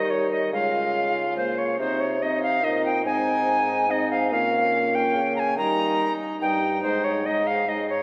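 A classical, Renaissance-style consort dance in triple time, this courtly and festive fragment is cut from a longer piece, with an airy, up-front alto recorder carrying the tongued melody with audible chiff and vibrato. Beneath it, a single bowed viola with a gut-string, period-style tone plays the second line, while a mellow, vintage-sounding solo trombone supplies the accompaniment and a dark, distant bassoon holds the bass, all three with light vibrato. All four play throughout the 8 seconds in a wet church reverb, and lossy compression artefacts roughen the sound.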